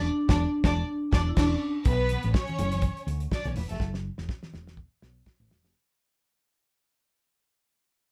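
Swung sixteenths drive this glamorous, joyful disco fragment, where a ringing vibraphone melody with slow vibrato opens beside a lush, distant bowed violin section and a round, dark hollow-body bass up front; during the opening band accent, a dry, damped drum kit with a fat snare and tight kick joins at 0.3 seconds, and very quiet low-tuned congas arrive at 1.9 seconds as the fade-out begins, with a drum fill from 3.8 seconds, all in the light reverb of a band playing live in one room.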